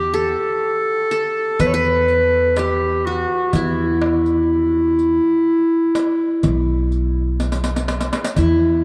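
Drenched in cathedral reverb, the recording sounds as if it were captured in a vast, echoing space, giving this short cut from a Turkish makam ensemble piece a longing, soulful air at 124 BPM in 10/8, in E makam huseyni. A distant, roomy clarinet carries the classical-style solo melody up front, while a plectrum-plucked qanun with triple strings adds a bright second line and a woody pizzicato upright bass anchors the low end. A vintage, band-limited riq with jingling soft-hand strokes keeps time from the start, the crisp metal-shell darbuka joins at 1.6 seconds, and a drum fill arrives at 7.4 seconds.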